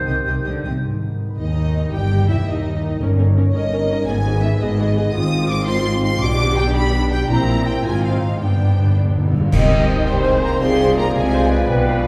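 A lush, vibrato-rich violin section carries the melody in this fast, restless and dramatic romantic orchestral passage, cut from a longer piece. It moves at 111 BPM in a rubato 6/8 and shifts from G# minor to C minor at 5.1 s. A second, warmer violin section sits in the background beneath it, while woody violas, smooth cellos and full double basses fill out the bowed accompaniment and bass. A mellow, distant French horn section holds sustained chords, and a ringing, thumb-plucked concert harp plays arpeggios throughout. Very quiet, round timpani struck with soft mallets add fills, and cymbal swells, clash cymbals and concert bass drum bring bright cymbals from 7.3 s. A bright, vintage-toned clarinet, a hollow, pure flute group and a roomy bassoon are heard briefly at the opening and return at 9.5 s, all set back in a wet scoring-stage reverb that places the listener further back in the room.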